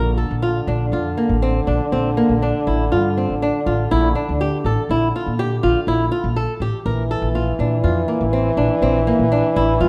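A fingerpicked flamenco guitar plays up front with fresh-stringed arpeggios above a woody, growly pizzicato upright bass, while a distant French horn with light vibrato carries a classical-style second line, forming a brief, shimmering and hopeful passage of contemporary chamber music in 7/4 that rests on a single Bbmaj7#11 chord within the moderate reverb of a recital hall and a dark, warm production.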